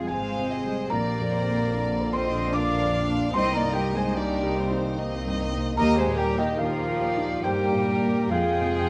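Close, detailed microphones and light reverb give this sorrowful cinematic passage, cut from a longer piece, an intimate, finely etched sound. In C minor at 74 BPM in 3/4 with a rubato feel, a dark chamber violin section carries the melody with vibrato and soft-attack sul tasto bowing, while a second studio violin section, pure and floating, plays a second line in the same range. A clear solo clarinet and a hollow concert flute add their own second lines, and a felt-muted upright piano gives a mellow, thick-felted accompaniment, joined by a studio viola section sitting in the background. Beneath, a rich symphonic cello section and a woody, distant double bass section form the bass, with a very quiet French horn section holding roomy sustained chords. The harmony moves from Fmadd9 through Bbadd9, Cm7 and Ebadd9 before returning to Fmadd9 at 8.3 seconds, lending the 8.9-second passage a moving, suspended quality.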